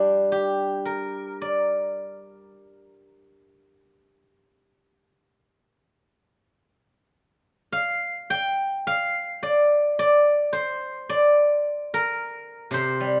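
Elegant and longing, this rubato Chinese traditional solo at 53 BPM in G yu mode features a steel-string zither played with fingerpicks, its silvery, ringing tone sitting up front and spanning C3 to G5 from 0.0 to 13.2 s within a moderate large-studio reverb, cut from a longer piece.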